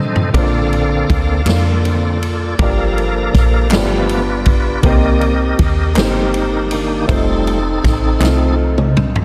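Slow gospel in a straight 6/8 with a jubilant, hopeful mood, where a full tonewheel organ with key click and fast rotary speaker takes the lead over an intimate baby grand piano with audible action noise, a round, woody FM bass, a boomy swinging big-band drum kit that opens and closes with fills, and crisp group handclaps tucked in the background from 1.5 seconds, all moving through a Bbmaj7, Gm7, G7, Cm7, F7 progression in a dense, heavily limited mix.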